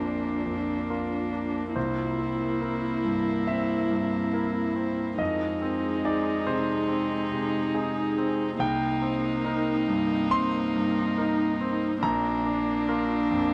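A clear, intimate concert grand piano with audible action noise, deep bass and long sustain sits up front in this longing, fragile neoclassical fragment in C minor at a rubato 70 BPM, alongside a dark, close viola played sul tasto with vibrato and an airy bow, a rich, distant cello floating on a pure second line, and a very quiet, glassy FM pad holding ethereal sustained chords, all under light reverb in a dark production.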